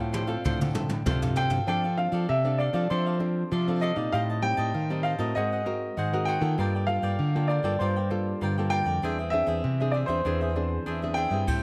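A straight 4/4 samba-and-choro pulse carries this yearning, bittersweet excerpt: a roomy brushed jazz drum kit with a boomy kick and dark cymbals plays a fill beneath an opening grand piano solo until 1.7 s, then falls silent until 11.5 s, while the natural, up-front piano, set in plate reverb and tape echo, sings the melody over crisp picked cavaquinho, a fingerpicked nylon-string guitar accompaniment and a second, darker fingerpicked nylon-string guitar with fresh strings holding the bass, all in a lightly reverberant room.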